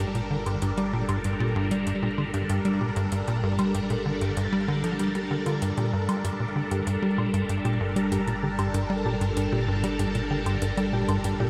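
Cosmic and expansive, this ambient, sequencer-driven space music moves at 96 BPM in a straight 4/4, resting on a single G minor chord in a short fragment cut from a longer piece. A tight, punchy sawtooth sequencer bass riff drives up front beside a swirling, vintage string machine holding bright sustained chords through ensemble chorus, phaser and shimmer reverb. Further back sit a warbling, lo-fi pluck tracing arpeggios through chorus and tape echo, a fat, detuned analog bass on a low G, and metallic electronic hi-hat and woodblock with tape echo, all inside a huge, wet ambient reverb.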